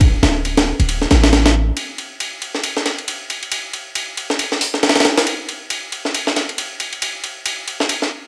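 Recorded at home onto cassette, this short fragment of a longer piece carries a light reverb and a digital ambience around its funky, playful breakbeat. The tempo sits at 137 BPM in 4/4, with a 58% swing on the sixteenths and a tuning of A4 = 437 Hz. A sampler-style drum kit sits up front with a compressed, gritty character, pairing a thumpy kick and a high-tuned snare with hi-hat and ride cymbal, all high-pass filtered and placed in a small room reverb with cassette tape colour. A deep, boomy 808-style bass built on a sine with a noise layer plays between D1 and A1, its fast attack decaying into a mellow tail, and it drops out at 1.7 s. From 1.8 s the drums carry the rest of the fragment by themselves until 8.1 s.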